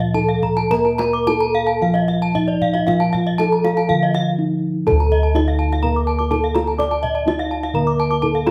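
Brilliant and hypnotic, this cut from a longer Balinese gamelan piece in D pelog moves at 106-125 BPM in a straight 4/4, with a mellow, airy bronze metallophone carrying the melody over a vintage, band-limited accompaniment struck with a wooden mallet, two horn-mallet metallophones spinning shimmering high arpeggios (one bright and dry, the other boxy), round, beating bossed gongs on the bass, and a tight, saturated kendang in the background, as the band plays live in a large room with moderate reverb, reaching a break at 4.1 s before the second section begins at 4.9 s.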